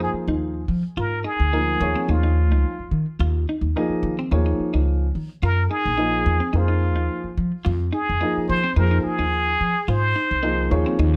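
Jazz in a straight 4/4 feel, this nocturnal, intense passage is cut from a longer piece. A trumpet with a plunger mute carries the melody as a close-miked, up-front solo, its bright wah-wah tone shaped by light vibrato and scooped notes and set in plate reverb until it drops out at 10.7 seconds. Beneath it, a dark grand piano supplies mellow accompaniment, while the pizzicato upright bass sits forward in the mix with a woody, thumpy gut-string sound. A clean electric guitar adds quieter picked, compressed stabs coloured by analog chorus. The harmony moves from Fm7 to Eb9sus4 and back, inside a light room reverb.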